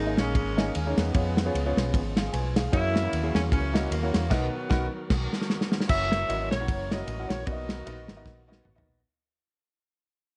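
A dark, vintage saxophone section carries the melody in this uplifting, hopeful uptempo gospel excerpt at 152 BPM with a swung feel in B major, backed by an intimate concert grand piano with audible action noise, a round, punchy hollow-body electric bass, a muffled, lo-fi soul drum kit sitting up front, and a fat, lightly overdriven tonewheel organ with key click and slow rotary speaker in the background, the band hitting an accent from 4.3 to 5.9 seconds amid drum and piano fills before the music fades out from 5.9 seconds with further drum and organ fills.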